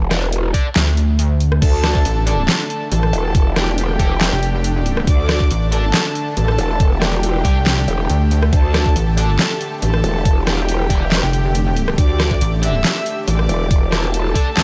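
At 139 BPM in a half-time 4/4 feel, this aggressive, heavy wobble dubstep excerpt rides a knocking, tape-tinged electronic kick that drops out between 0.8 and 1.6 seconds, under an overdriven, up-front drum kit with a deep snare, bright hats, handclaps, rim clicks and crash. A growling, detuned growl bass with formant-filtered wobble opens the track at 0.0 seconds, then a pulsing, mellow pluck wobble bass joins with chorus and saturation, while a distorted, double-tracked electric guitar adds picked stabs with digital delay in the background. From 1.6 seconds a rich, intimate violin section carries the melody with light vibrato and 12-bit sampler grit, over a lush supersaw pad that pumps behind everything in a dark production with light reverb.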